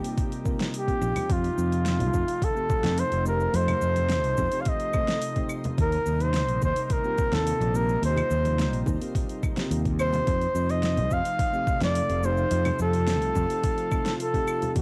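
A close-miked, warm flugelhorn with light vibrato opens this relaxed, smooth sunset chillout passage at 107 BPM, its melody carried by tape echo and shimmer reverb over round electric-piano-like synth keys and an airy, breathy pad that both sit in the background with chorus and a cassette-tape tint, while an overdriven deep house kit of claves, hi-hat, shaker and fat snare is joined by a gritty, thumpy electronic kick from 0.2 seconds, an up-front fretless electric bass enters at 1.0 seconds and very quiet, bright, dry congas follow at 1.2 seconds, all moving between Eb6 and F7 chords in a home cassette recording cut from a longer piece.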